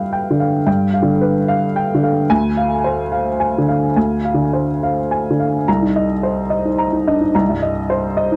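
A woody, slightly detuned upright piano plays alone, up front with audible action noise, in this reflective, intimate passage of neoclassical minimalist piano in C minor at 108 BPM in a rubato 3/4, moving from G7 to Dm7b5 and settling on Cm7 at 5.7 seconds across a range from C2 to Bb5, captured in a dry, close 1970s-style studio sound.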